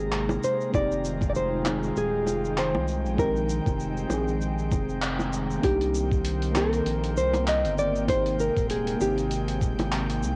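Sunset chillout in C minor at 98 BPM, this relaxed, swung 4/4 excerpt moves through Abmaj9, Fm9 and Bb13sus4 before settling on Cm7 at 5.6 seconds and returning to Abmaj9. A full-bodied, thumb-plucked nylon-string guitar carries the melody between G4 and Eb5, with audible finger squeak and a tape echo trailing its notes. Beneath it, a soft FM electric piano with chorus, phaser and tape echo sits dark in the background, while an airy, breathy pad with chorus holds sustained chords across a broad range and a deep, wave-folded analog bass with tube saturation sits up front. A gritty, compressed sampler-style kit of handclaps, hi-hat and shaker joins with low-tuned bongos played with soft hands and a thumpy electronic kick, and the band hits an accent at 5.0 seconds. A glassy texture of drifting overtones on Bb5 floats faintly in its own reverb until 5.7 seconds, and the whole piece has the muffled top end of a home cassette recording with light digital ambience.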